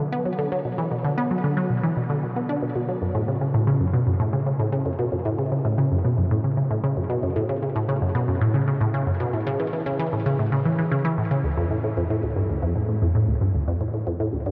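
A juicy, squelchy resonant blip pluck with a fast attack and short decay plays alone through a phaser and delay, sitting up front in a huge, wet reverb on worn, warbling cassette tape, giving this hypnotic, expansive ambient excerpt a drifting pitch throughout its 14.5 seconds.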